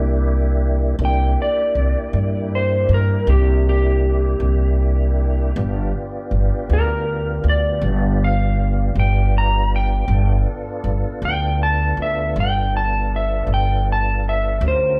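In a moderately reverberant large studio room with the band playing live, this laid-back yet rollicking slow blues excerpt in 12/8 at 53 BPM and G mixolydian sets a woody, growly pizzicato upright bass up front beneath clear sustained tonewheel organ chords turning through a slow rotary speaker with chorus vibrato, while a dark, slightly broken-up electric slide guitar played with fingerpicks enters at 1.0 s to solo up front as the harmony moves from C7 to G7 at 5.6 s.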